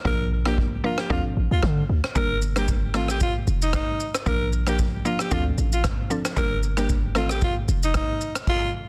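The sound is dense and heavily limited, with very dry, close-sounding parts in a modern master. This hypnotic, smooth afrobeats fragment, cut from a longer piece, opens on a break during its first 2.2 seconds, moving in a lightly swung 4/4 over a cycling Bb, Dm7, Gm, Adim progression. A hard-hitting 808-style bass sits up front with a punchy, heavy sine tone, a noise layer and fast-attack, decaying notes, while a street-band drum kit lays down boomy kick, rim click, shaker and dark crashes with an acoustic, big-room character and a rolled-off top. A mallet-like synth pluck gives woody, round, detuned FM accompaniment with short decay and chorus, and drops out at 7.4 seconds. Over it, a growling alto saxophone carries the lead in pop style, raspy and gritty with vibrato, scooped notes and a delay trailing its lines, holding on until 8.7 seconds.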